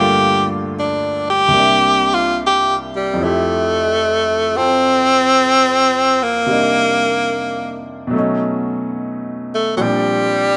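A tenor saxophone opens this romantic, late-night jazz ballad at a slow 73 BPM, taking a forceful solo over a baby grand piano through the first 3.2 seconds as the harmony moves from Gm7 to C7. The saxophone sits up front with an edgy, punchy tone, a jazz-style vibrato and a present, assertive voice that carries the melody in F major. The piano accompanies from start to finish, its clear, natural sound intimate and close, with the action noise of the instrument audible beneath the notes. After 3.2 seconds the passage settles onto Fmaj7 and drifts through Cm9, B9 and Bb69, with the lilting swing of the eighth notes giving the 4/4 metre a relaxed sway. A moderate plate reverb lends the pair a soft halo, and the top end is gently rounded off. The clip is cut from a longer piece and lasts about 10.6 seconds.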